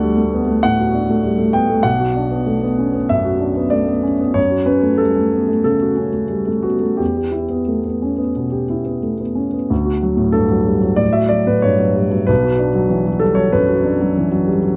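A warm grand piano opens alone on a D major chord, played up front with audible action noise in a tender, intimate neoclassical minimalist style, moving with a rubato feel at roughly 87-98 BPM in 4/4, tuned to A4 = 444 Hz. The harmony moves through D, Bm, F#m and Em, then returns to D at 9.7 seconds to repeat the opening phrase before the fragment ends at 14.8 seconds. The close, detailed miking and dry room keep the instrument's natural tone near and personal.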